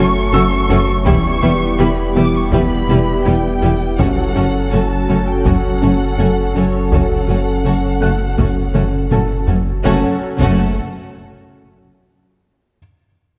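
This excerpt from a hybrid orchestral and electronic film score opens on a full bed of sound: a lush violin section carries an expressive, vibrato-rich melody with a soft attack, while a second violin line, a bright and intense viola section, and a warm French horn section fill in the harmony beneath it. Underneath, a dark cello section, a distant double bass section and a thick, saturated sub bass anchor the low end, joined by a vintage analog pad whose detuned, warbling tone carries a subtle chorus. A round, tine-like synth pluck traces quiet arpeggios, and a clear grand piano adds delayed texture in the upper register. Taiko drums struck with hard sticks enter at 1.1 seconds, giving the brooding, relentless mood a straight pulse, and a drum fill at 8.7 seconds leads into a new section at 9.8 seconds. The harmony moves from F# minor to E minor and back, and the whole piece sits in a dark production with a moderate scoring stage reverb.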